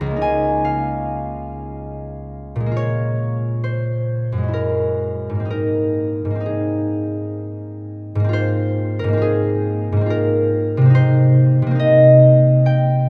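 Bathed in a moderate cathedral reverb, this dreamy, peaceful fragment of a longer classical piece features a solo concert harp, fingerpicked, ringing and up front with a warm acoustic tone, drifting in a rubato 3/4 through a repeated opening passage whose chords move from Eb11/Db through Bbm7 and Gb9 to Abadd9 before settling on Cm7 at 11.0 seconds.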